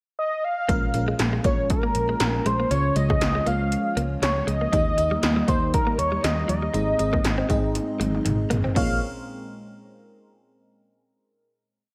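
Urgent and nostalgic, this short 1980s-style pop piece opens with a bold, retro octave-doubled lead, touched with chorus, phaser and vibrato, sounding its motif alone from 0.2 seconds before the band enters at 0.7 seconds over a Bbm7, Db, Eb, Ab progression. Electronic pad drums with a punchy kick, a gated snare, metallic hats and a big backbeat sit up front beside a dark, foam-muted bass driving eighth notes, while a dreamy FM electric piano pushes chord rhythms, a swirling, nasal analog pad sustains in the background, and a clean, direct-recorded guitar picks a muted single-note riff. A drum fill at 7.8 seconds leads into a final Bbm7 chord that rings out in a lush hall reverb.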